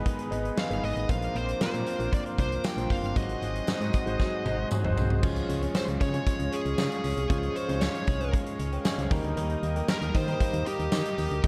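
1980s-style pop at 116 BPM in 4/4, nostalgic and uplifting, with a huge arena drum kit featuring a fat snare and punchy kick up front, a round, punchy FM bass, and an intimate concert grand piano with audible action noise carrying the accompaniment under a smooth sawtooth pad treated with chorus in the background. A faint, twangy twelve-string electric guitar plays a riff, while a high-gain lead guitar with distortion and delay enters at 0.6 s on the melody and a very quiet, jingly tambourine joins at 1.1 s. A drum fill at 4.2 s leads into a new section at 5.2 s moving through Db and Eb, all set in a lush hall reverb with a dark production.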